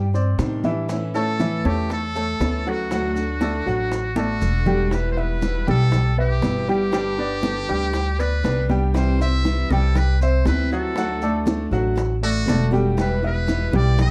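Over a straight 4/4 groove at 119 BPM, this sunny snippet of Cuban son and guajira sets a woody, thumpy upright bass up front beneath worn, bright grand piano arpeggios, boxy parlour acoustic guitar picking, round low-tuned bongos, damped high-tuned congas and grainy maracas, while a buzzy metal-muted trumpet with light vibrato enters at 1.2 seconds to carry a forceful, jazz-style solo melody over chords moving from Cmadd9 through A, D, Em, G and C, with a drum fill at 4.2 seconds leading into the second section in a dark, lightly reverberant mix.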